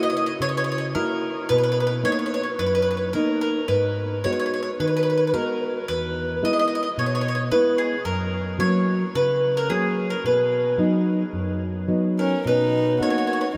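A bowl-back mandolin and a nylon-string guitar open this romantic, sunny Italian folk serenade together, set at 110 BPM in a straight 4/4 and in B major. The mandolin carries the melody up front, its picked double strings giving a warm acoustic tone between G#4 and D#5, while the guitar supplies a dark, full-bodied accompaniment from E2 up to F#4, thumb-plucked with the occasional finger squeak. The harmony moves from F#7/C# through Bmaj7, G#m7, E and F# to B before returning to Bmaj7 as the opening section repeats at 12.5 seconds. Just before that, at 12.2 seconds, a single violin enters with a soft, floating second line, bowed sul tasto for a pure, airy sound close to the listener. A huge, wet reverb places the players in a vast, echoing space, and the passage ends at 13.6 seconds, cut from a longer piece.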